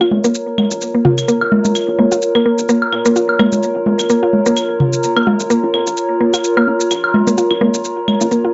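Hypnotic and cool, this fragment of swung minimal techno at 128 BPM in Bb minor holds a single Bbm chord while a woody, round mallet-like synth pluck with chorus and analog delay carries the riff over muted, phaser-tinged dub chord stabs, a very quiet rubbery square bass, up-front cassette-taped electronic claves, congas, toms and woodblock re-recorded in a large room, a nostalgic, warbling tape-like pad with chorus and reverb, and a tape-warm shaker entering at 0.2 s, all captured as a lo-fi home cassette recording with a dulled top end.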